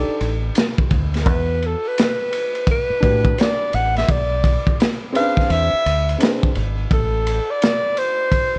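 Through worn, warbling cassette tape and light studio reverb, this smoky, nocturnal jazz-hop fragment sets a breathy, whispered alto saxophone melody over a mellow, dark grand piano that drops out at 6.5 seconds, a round, deep dub fingered electric bass, and a gritty, saturated breakbeat kit with swung feel and vintage sampler crunch.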